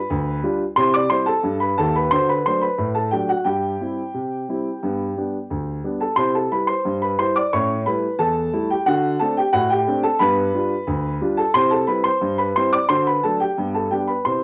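Lively and jaunty, this ragtime piano piece moves at 89 BPM in a straight 2/4 feel and sits in C major. A single concert grand plays solo for the whole 14.4 seconds, cut from a longer piece, ranging from D2 up to D6. Its tone is warm and boxy, with a deep bass and long sustain, and placed up front, with a cassette tape colour over the sound. The harmony opens on G7 and travels through C, D7, A7 and back toward G7 and C before settling on G at 13.6 seconds. A moderate studio reverb surrounds the piano, and the whole thing carries the homely character of a cassette home recording.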